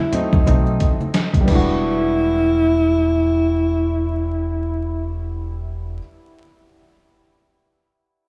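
A swung 89 BPM groove of muffled, thumpy, overdriven sampler-style drums drives this nocturnal, mellow jazz-hop fragment in E minor until it drops out at 1.7 seconds, alongside ringing congas and maracas in the background, a growly pizzicato upright bass, a woody upright piano with audible action noise and tape echo over chords moving from B7b9 to Em7, and a breathy, whispered alto saxophone melody with subtone, vibrato, scooped notes and tape echo that ends at 5.3 seconds, the mix steeped in small-room ambience, heavy echo and vinyl crackle.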